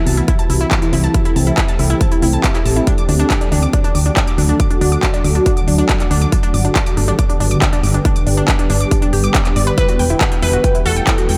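Driving and soaring, this excerpt of uplifting trance moves at 139 BPM in a straight 4/4 over a chord path of C6, D, G and then Emadd9 at 9.8 seconds. A lush, detuned sawtooth unison pluck spins arpeggios from D4 to D6, its short filtered decay touched with ring modulation, a noise layer, subtle chorus, tape echo and sidechain pumping. Beneath it, a round, dark FM bass with a fast attack holds down the low end from E1 to D2, pumping with the sidechain. A punchy, tape-kissed electronic kick sits up front, joined by a layered big-room kit of handclaps and crisp hi-hats whose hats and cymbals also pump. At 9.8 seconds a glassy, crystalline wavetable pluck enters as a second line between A4 and B4, bright with a sub octave, a filter sweep, chorus, cassette character and delay. The whole mix is soaked in a lush hall reverb of about 1.7 seconds, giving it a dreamy sheen.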